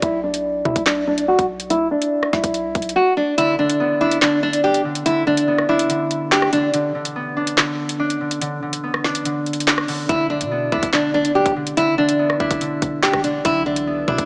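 A half-time drill groove at 143 BPM drives this cold, ominous hip hop excerpt, its electronic kit up front with a hard-clipped kick, woody snare, metallic hats, handclaps and rim clicks, though the kick drops out from 3.4 to 10.1 seconds. A fingerpicked nylon-string guitar carries the melody over Bm and E7(no3) chords, full-bodied and classical with audible finger squeak under a low-pass filter. A ringing concert harp, also filtered, joins as accompaniment, and a deep, dark sine 808 bass sits in the background, all framed by light small-room reverb, a small-speaker sound, an opening filter sweep and a break midway.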